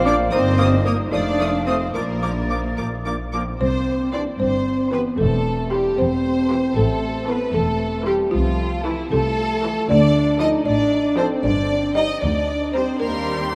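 A playful, whimsical cinematic film cue in 6/8 at 76 BPM, mischievous and magical, in which a woody, round, soft-mallet marimba carries the melody with a lush violin section, while a close second violin section adds a second line, mellow French horns hold sustained chords over a distant viola section, an expressive cello section with portamento and a smooth double bass section, and an airy flute, a roomy oboe and a very quiet clarinet add brief second lines in the opening seconds before the key moves from Bb major to C major at 3.6 s, the ensemble steeped in the long echo of a vast cathedral.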